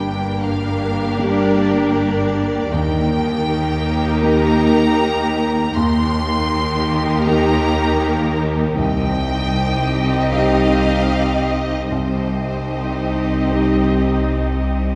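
A cinematic, emotional film score for orchestra, bittersweet and sorrowful, moving at 78 BPM in 4/4 with a rubato, uneven pulse over Gm, Eb and Cm. Violins carry a smooth, lightly vibrato melody from C5 to C6 above a lush, expressive second violin line, while lush violas, an intense, clear cello section and rich double basses sit beneath, supported by an open, long-sustaining baby grand piano in the background and a very quiet, ringing harp playing fingerpicked arpeggios. A wet church reverb gives the whole ensemble a spacious hall sound across this 15-second cut from a longer piece.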